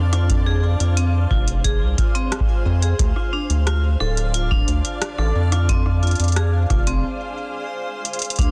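A dense, heavily limited and fairly dry mix frames this melancholic, intricate IDM fragment, where a deep electronic kick and a booming analog drum machine with metallic hi-hats, rim clicks and a soft-clipped snare sit beneath a round, saturated bass up front, a blurred, detuned granular cloud pad holding sustained chords over F minor and D minor, dark, ringing vibraphone arpeggios struck with hard mallets and echoed by digital delay, and a very faint flickering grainy texture that drops out at 7.0 seconds as a break opens, capped by a drum fill at 8.1 seconds.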